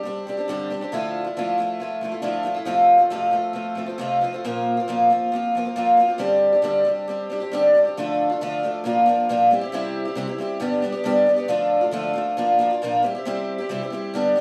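Wistful and reflective, this rock excerpt in D minor moves at 136 BPM in a straight 4/4, with a lone picked twelve-string acoustic guitar, tuned to A4 = 445 Hz, playing solo from start to finish. Up front in the mix, the archtop guitar sounds bright and a little boxy, its octave-doubled strings giving a shimmering edge as it moves through suspended and added-tone chords like Gsus4, Dmadd9 and Bbsus2. At 8.0 s the harmony shifts to a plainer cycle of Dm, Bb, C and G, all set in a moderate, large studio reverb that gives the feel of a band playing live in one room.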